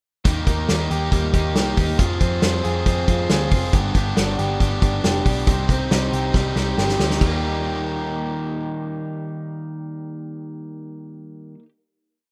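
Jangly indie pop in Eb major at 138 BPM, bright and nostalgic, this short, complete piece runs through a single verse before settling on a final Eb chord at 7.2 seconds. A crunchy overdriven guitar strums open chord shapes in eighths, while a second electric guitar through a small old amp plays a twangy, lo-fi fingerpicked roll, dressed in spring reverb and slapback echo. Underneath, a foam-muted picked bass drives steady eighth notes with slides, its tone dark and round. The loose indie drum kit sits up front with a punchy kick and dark cymbals, keeping a brisk backbeat and closing with a fill from 6.3 seconds before dropping out at 7.3 seconds as the guitars and bass ring on. The whole thing has the rough, lightly reverberant feel of a home demo.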